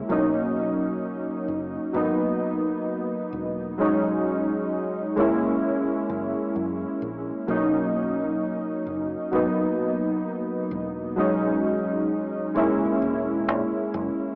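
Warbly, detuned lo-fi synth keys with subtle chorus and tape echo sit up front in this woozy, nostalgic vaporwave fragment at 65 BPM in B major, cycling twice through Bmaj9, a rootless G#m9, Emaj13 and F#9 above a foam-muted, tube-saturated fingered electric bass mixed well beneath them, all soaked in a huge ambient reverb and the small-speaker sound of cassette tape.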